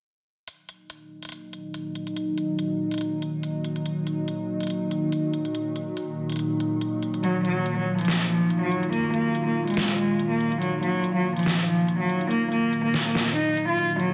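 This menacing heavy wobble dubstep piece, cut from a longer track, opens at 0.5 seconds with an electronic drum kit: a deep, layered snare and crisp hi-hats, up front and tape-tinged in a studio reverb. The tempo is 142 BPM in 4/4 with a half-time feel and a light 16th-note swing, set in Eb minor and tuned to A4 = 436 Hz. At 1.4 seconds an evolving wavetable pad enters with sustained chords, its detuned unison tones blending triangle and sine shapes with a slow attack, chorus and a built-in reverb, mellow and morphing under a filter sweep. At 7.2 seconds a single bowed cello takes the melody, played sul tasto with light vibrato and a soft attack, close and intimate, trailed by dub echo. A very quiet electronic riser appears at the final moment. The sound sits in a moderate digital plate ambience, and the dense, heavily limited modern master gives the whole an aggressive weight.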